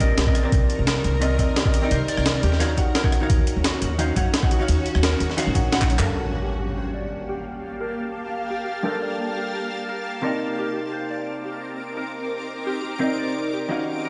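This liquid drum and bass excerpt opens on a drop, with a gritty, pitched-up breakbeat kit of high-tuned snare, rim click, hi-hat and handclaps riding over a thumpy, up-front electronic kick at 173 BPM in G minor, with a rolling, dreamy mood. Beneath it, a woody upright bass is plucked on steel strings, while a dark, clean hollow-body jazz guitar plays picked accompaniment through a low-pass filter and dub echo. A shimmering, ethereal pad holds sustained chords with slow attack and octave-up sparkle, colored by chorus, phaser and sidechain pumping, and a ringing Celtic harp fingerpicks arpeggios that also pass through dub echo. After a drum fill at 5.8 seconds, the kick, bass and breakbeat fall away, and an electronic impact lands at 6.1 seconds as the second section begins. From there the guitar, pad and harp carry the minor ninth chords, with a filter sweep on the harp, all set in a stone room with the sound of a big system in a bare space and the top end rolled off.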